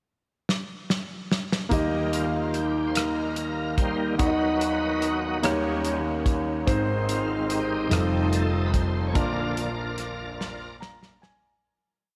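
A dreamy, reverb-soaked sound opens this soulful and jubilant slow gospel piece in 6/8 at 48 BPM in Eb major, where a soul drum kit with a tight kick, medium-tuned snare, rim clicks and hi-hat plays a pickup fill from 0.5 seconds before settling into an up-front, slow six-eight groove. At 1.7 seconds a deep-bassed concert grand piano enters with held chords, grace notes and short fills, while a bright, shouting, lightly overdriven tonewheel organ with key click, chorus vibrato and slow rotary speaker takes the lead with held chords. A mellow, distant French horn section adds a very quiet sustained pad beneath, and the piece fades out from 9.2 seconds as the drums and piano close with fills.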